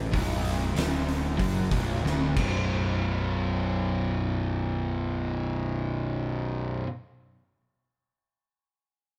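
A double-tracked, distorted fuzz guitar riff and a round, overdriven fuzz bass open this ominous, heavy stoner and doom metal fragment together, joined at 0.1 s by an oversized, low-tuned acoustic drum kit with a punchy kick, fat snare and dark cymbals in a bright stone room; the band slows down through the opening section, with a drum fill arriving at 2.0 s before the kit stops at 2.5 s, leaving the up-front guitar and bass to carry on, all played live in one room with light reverb.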